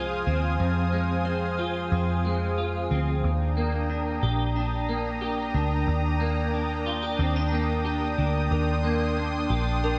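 A lush, detuned sawtooth pad holds sustained chords up front over a dark, round, foam-muted picked bass, while a bright, twangy clean electric guitar plays arpeggios through ensemble chorus and delay. This melancholic, hazy dream pop excerpt moves at 91 BPM in a straight 4/4, shifting from Fm7 to Ebmaj7 at 3.2 seconds under light digital reverb. A shimmering FM bell with a dreamy halo sits in the background, dropping out at 3.5 seconds and returning at 8.5 seconds.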